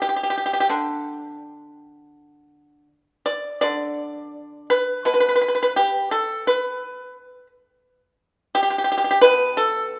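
Chinese traditional solo plucked-string music, serene and pastoral, with a lone pipa played with fingerpicks in a free, rubato 4/4 around 85 BPM, its bright, dry, percussive tone sitting up front across a range from B2 to D5 within the moderate reverb of a recital hall, in a 10-second passage cut from a longer piece.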